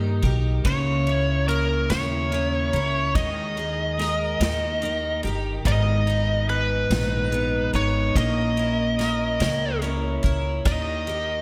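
This melancholic, aching six-eight pop ballad opens on a D# chord with a picked steel-string acoustic guitar, full-bodied and double-tracked with fresh-string finger squeak, alongside a twangy, compressed twelve-string electric guitar playing clean arpeggios through slapback echo and digital delay. An upright bass sits up front from the start, its gut strings giving a woody, thumpy pizzicato tone. At 0.2 seconds an unplugged drum kit joins on kick, ride cymbal and snare, played with bundle sticks for an airy, polished small-room sound with a punchy kick. From 0.7 seconds a dark, distorted, bluesy lead guitar carries the melody up front between A#4 and D#5, coated in slapback echo. The slow 48 BPM pulse moves through A#dim/C#, D#sus4, G#madd9 and A#dim before settling back on D#, and a lush hall reverb lends the whole short cut from a longer piece a big arena sound.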